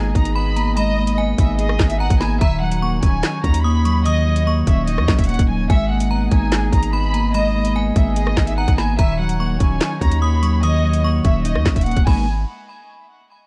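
Drill hip hop in G# minor at 146 BPM with a half-time feel, this ominous, tense excerpt sets a lush, bowed violin section melody against a metallic, inharmonic FM bell line with chorus and digital delay, over a dark, clean fingered electric guitar soaked in spring reverb and clear, soft-attacked brass chords sitting in the background. A deep, sine-like 808 bass with a fast attack sustains up front beneath an electronic drill kit of hard-clipped kick, woody snare, metallic hi-hats, rim clicks, handclaps and crash, roughened by vintage 12-bit sampler grit. The chords move between G#madd9 and D#m7 in a dark, warm digital ambience before the parts drop away around 12.3 seconds.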